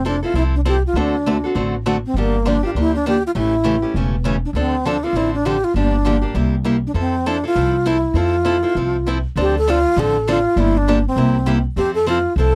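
A dry, close recording in a 1970s studio style, with light reverb and every instrument up front, captures this short fragment of a longer acoustic string swing piece in the jazz manouche vein. At a brisk 200 BPM in 4/4 with a swung eighth-note feel, the mood is playful and charming, moving through a Fmaj7, D7, Gm7, A7 progression in F major before turning toward D minor at 9.4 seconds. A breathy wooden-headed alto flute carries the melody throughout, its vibrato, crisp attack, lifted highs and unsteady tone giving the line a lively, human edge. Beneath it, a picked steel-string acoustic guitar supplies a warm, boxy parlour-style accompaniment. A pizzicato upright bass on gut strings anchors the low end with a woody, dark, thumpy tone across all 12.6 seconds.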